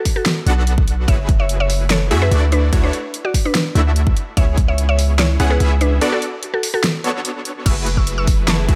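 A dry future bass drop cut from a longer piece, dreamy and emotional in a half-time feel. A woody, round mallet-like synth pluck carries the melody with chorus, digital delay and sidechain pumping, over punchy, airy supersaw stabs, a deep, mellow sine 808-style bass, and overdriven big-room dance drums with a huge snare. A hard-clipped electronic kick sits up front until 4.7 seconds, then stays out through a break from 6.0 seconds, and returns at 7.7 seconds as a lush, bowed symphonic string section with vibrato joins on sustained chords.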